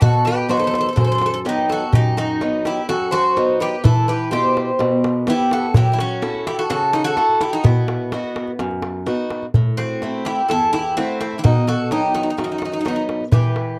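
A bright, metallic Greek bouzouki carries the melody through this short cut from a longer Greek folk piece, its double strings picked with some octave-doubled courses ringing out. A second bouzouki, warmer and set a little lower in the mix, plays a supporting line beneath it. A boxy, up-front acoustic guitar picks a swing-style accompaniment across a span from E2 to D#5, while a clay-shelled darbuka with a natural skin head sits close and warm, sounding like a live room. The mood is dramatic and intense at 126 BPM in a straight 4/4, with harmony moving from B through Em and F#m7 before a new section at 9.5 seconds turns to Am and back to B. The recording is dry and close in a 1970s studio manner, with only light reverb, and the tuning sits slightly under standard pitch at A4 = 438 Hz.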